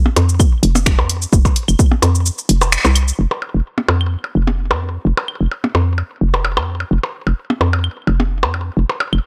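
Quirky and sparse, this minimal techno excerpt rides a swung 16th-note groove in 4/4, cut from a longer piece. A hollow, knocking FM bass sits up front between F1 and F2, bouncy and mellow with a fast attack and decaying notes, pumping under sidechain compression from 0.2 seconds to the end. Tape-tinged percussion blips and claves echo through a delay, while a house drum kit with cabasa, finger snaps and bright, overdriven hats plays through low-pass filters until 3.2 seconds. A punchy, layered electronic kick, overdriven and close, drops out at 2.3 seconds, and the band lands an accent at 2.7 seconds before the second section takes over. The room is dry, with little reverb.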